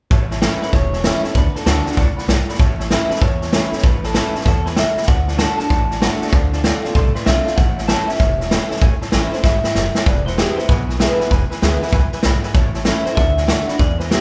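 Rockabilly at a rollicking, upbeat 193 BPM with a swung feel in A major, this short cut from a longer piece has a punchy, up-front vintage drum kit with a rolled-off top and a drum fill at 9.4 seconds, a woody, thumpy pizzicato upright bass on gut strings, a picked steel-string acoustic guitar and a brilliant upright piano sitting in the background, and a twangy, slightly broken-up electric guitar through a small old amp carrying the melody from 0.6 seconds, all played live in one room with light reverb as the chords move from A through D, Dm7 and E.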